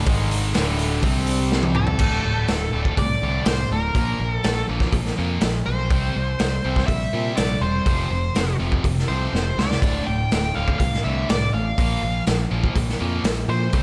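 Driving and heavy, this hard rock excerpt in D minor moves at 123 BPM in a straight 4/4, opening with a very quiet, detuned sawtooth pad and a spring-reverbed, double-tracked overdriven guitar that both drop out at 2.0 s after a drum fill. Underneath, a scooped high-gain guitar and a sludgy overdriven guitar grind out the riff in the background while a growly, punchy picked bass and an up-front garage drum kit with a boomy kick, gritty saturation and a pumping room sound drive the whole stretch. From 1.8 s a dark, nasal lead guitar with a parked wah and slapback echo carries the melody over chords of D5, Bb5, C and F5, with a second drum fill at 9.3 s, all set in a small, lightly reverberant room.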